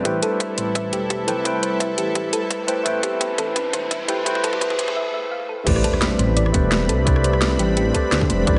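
Liquid drum and bass, lush and melancholic, in which a clean tine electric piano with medium tremolo and delay sits up front over a thick chorused unison pad with sidechain pumping, a deep rumbling detuned saw bass with tube saturation, and a round, warbling thumb-piano-like synth pluck arpeggiating in the background, while an overdriven kit of cracking snare, bright hats and a tight kick plays a drum fill through the build-up, a riser leads into a brief break filled by a swell, and an impact lands as the drop arrives at 5.7 seconds, moving from a rootless Fmaj9#11 to Am11 in a moderate recital hall reverb.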